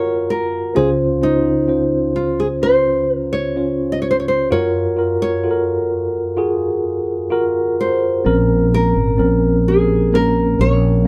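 This hopeful, heartfelt pop piece moves at a slow 64 BPM in a straight 4/4, cut from a longer work. A clean tine electric piano, heard through its built-in speakers, carries the accompaniment up front from the start, shifting between Gbmaj7 and Dbmaj7 chords. Over it, a fingerpicked classical nylon-string guitar sings the melody between Eb4 and Eb5, with finger squeak adding an intimate, acoustic touch. At 8.3 seconds the harmony turns to Bbmadd9 and a fretless electric bass enters, its direct, amped tone sitting low and up front. Light reverb gives the sense of a band playing live together in one room, with a warm, close feel throughout.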